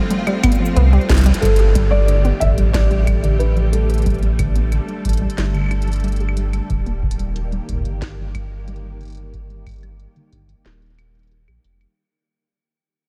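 IDM excerpt at 91 BPM, playful and wistful, where a muted, felt-dark upright piano with tape echo carries the melody until 5.0 s over silky string-machine chords and a warbling lo-fi pluck arpeggio, both under filter sweeps, while a round, up-front sub bass, a deep dry kick in the background and an industrial kit of clanging snare and crisp hats fill out the light digital ambience, moving from Fadd9 to Gsus2 at 1.4 s following a drum fill and band accent from 1.1 s, and then to Eb through a fade-out.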